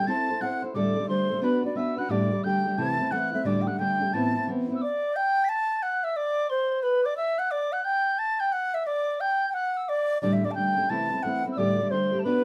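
In a moderate studio ambience, this swung Celtic hornpipe cut from a longer piece feels driving and wild, led by a close-miked baroque flute with a pure, crisp attack and expressive vibrato sitting up front. A hollow wooden whistle carries a higher second line with an airy, soft-edged tone and lifted highs. A dark, fingerpicked steel-string acoustic guitar with audible finger squeak accompanies from the start, drops out at 4.8 seconds, and returns at 10.2 seconds.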